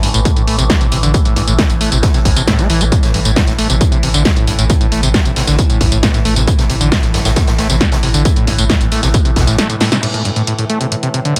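The squelchy, gritty acid bass leads this relentless, intense stretch of driving peak-time techno at 135 BPM in A minor, its resonant sawtooth riff running from G2 to C4 with a filter sweep, cassette-tape grit, delay and sidechain pumping. Beneath it a deep, thick sub bass holds A1 until 9.6 seconds, tube-saturated and low-pass filtered. A detuned drone of sawtooth and sine tones with moving overtones sits lower in the mix between A2 and E3, washed in chorus and its own reverb. The heaviest element is a layered electronic kick, tape-warm and re-recorded in a small room, which plays from 0.3 to 9.5 seconds. A dry, up-front analog drum machine supplies a punchy snare, hi-hat, tambourine and crash, while a natural acoustic jazz kit adds hi-hat and a medium-tuned snare in the background, and a drum fill at 9.8 seconds and a band accent just after mark the turn into a brief closing section under light reverb.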